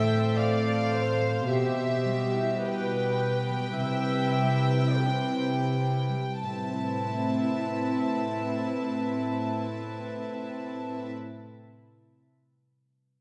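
Cinematic and rubato in A minor, this moving, bittersweet passage, cut from a longer piece, drifts at 44-57 BPM and slows through its first 6.4 seconds. A close violin section carries the melody with a soft, pure, floating sul tasto tone, while a distant second violin section adds a rich counterline, violas give intimate accompaniment with light vibrato, and cellos anchor the bass. A thumb-plucked concert harp rings in the background with arpeggios until 11.4 seconds, all set in a wet scoring stage reverb as the chords move from Amadd9 through Em/B and Cmaj7 and back to Amadd9.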